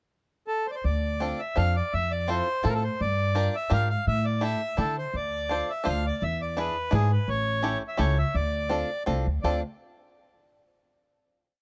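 A reedy accordion with dry tuning opens at 0.5 s with a full, motif-based melody in period phrases, joined at 0.8 s by a woody, thumpy pizzicato upright bass on steel strings playing root and fifth on the main beats, and at 1.2 s by a bright, twangy bluegrass banjo played with fingerpicks, adding percussive backbeat chords in close voicing. All three parts sit up front in a whirling, bittersweet musette waltz in D minor at 168 BPM in 3/4 with a rubato feel, tuned to A4 = 439 Hz and captured as a dry, close 1970s-style studio recording with small room reverb.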